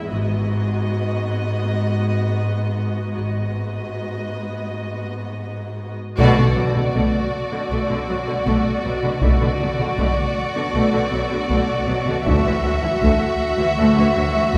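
Cinematic suspense film score, eerie and mysterious, in which a rich violin section carries an expressive bowed melody over smooth, even violas, an up-front warm cello section and a double bass section set in the background, until at 6.2 s a second violin line and a hard-stick taiko ensemble enter together on a band accent, the ensemble heard from further back in a wet concert hall in this passage cut from a longer piece.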